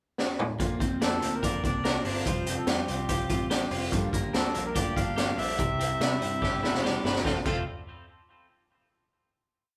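A reedy, breathy melodica carries the tune in this short, nostalgic and bright piece of jangly indie pop, spinning a motif-based melody in sentence-like phrases from 1.0 seconds onward. A raw garage drum kit sits up front with a high-tuned snare, punchy kick and gritty, saturated character, opening with a fill in the pickup bar and driving a brisk indie backbeat before another fill at 6.4 seconds leads into the final chord. A clean, twangy twelve-string electric guitar plays a fingerpicked roll of arpeggios through analog delay, while a full-bodied jumbo acoustic guitar sits in the background with eighths strumming on barre chord shapes and audible finger squeak. Underneath, a dark, foam-muted electric bass plays a round, melodic line. The band sounds as if it is playing live in one large studio room, and a moderate reverb gives the pre-chorus progression of Bbadd9, Fsus2, Gm7 and C room to breathe before it settles on F.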